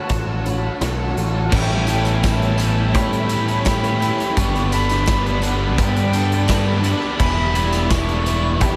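A huge, hazy wash of ambient reverb soaks this dreamy shoegaze and dream pop excerpt at 85 BPM in A mixolydian, where an airy, distant jazz flute with vibrato and analog delay sings over a retro chorused pulse-width pad, a shimmering octave-doubled twelve-string acoustic guitar with lush chorus and delay, a very quiet direct-recorded clean electric guitar, a background overdriven guitar with ensemble chorus, an up-front growling overdriven bass, a big-room rock drum kit with punchy kick, and, from 1.5 seconds, a bright double-tracked distorted guitar riff joined by a faint vintage tambourine, all drifting through Dmaj7, A9, Gmaj7 and Em7.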